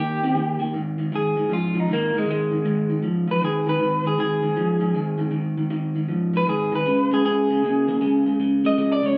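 A live, small-room sound with wet studio reverb carries this rollicking, gritty swung blues at 157 BPM, where one guitar through a small old amp plays a lo-fi, slightly broken-up picked riff up front while a second, compressed and treated with spring reverb, takes the melody as a solo from 0.7 s over chords moving from Eb to Ab5 and on to Db5 before this short cut from a longer piece ends at 9.2 s.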